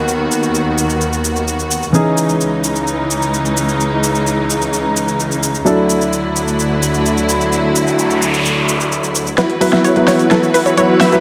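Festival progressive house at 129 BPM in E major, this triumphant, uplifting passage is cut from a longer piece and opens with a warm concert grand piano, its deep bass lending weight, while a clear, smooth symphonic string section sits up front with lush bowed chords and gentle vibrato. A big-room dance drum kit enters almost at once, its overdriven, layered hi-hat, shaker and huge snare giving the groove a produced, electronic punch, and the harmony moves from B/D# through C#madd9 to Dadd9. A noise sweep and riser rises into the mix at 7.8 seconds. At 9.4 seconds the chord lands on Esus2 and a build-up begins with a drum fill, as a punchy, bright unison pluck arpeggio with tape colour and delay joins a dense, detuned supersaw riff set in the background, both carrying filter sweeps. A fat, saturated analog bass holds a very quiet E2 underneath, and a lush hall reverb bathes the whole piece in spacious depth.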